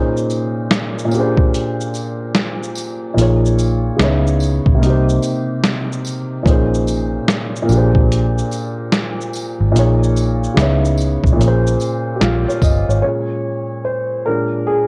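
A dark, woody upright piano opens this nostalgic, melancholic lo-fi hip hop excerpt in Bb dorian at 73 BPM, its long sustain and cassette-tape tone sitting up front. Gritty, pitched-down boom bap drums with a thumpy kick join almost at once, with a jingly tambourine in the background, all over a swung feel and shifting chords such as Bbm11, Bb13 and Eb9sus4/Bb. A round, foam-muted electric bass enters at 3.2 seconds, and at 13.0 seconds the piano plays alone over Bbm7 and Bb7, with light reverb and cassette tape coloring the whole mix.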